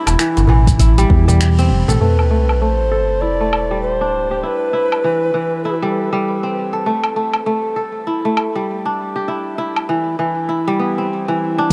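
Organic downtempo with a hypnotic, earthy mood, where an airy, reedy wooden flute carries the melody with vibrato through delay and shimmer reverb until 6.6 seconds, over fingerpicked, ringing kora arpeggios, a smooth sawtooth synth bass up front, a tape-warm deep house kit of snaps, hi-hat, shaker and woodblock, a crisp metal-shell darbuka in the background, a deep electronic kick, and a sub drop impact from 2.0 seconds.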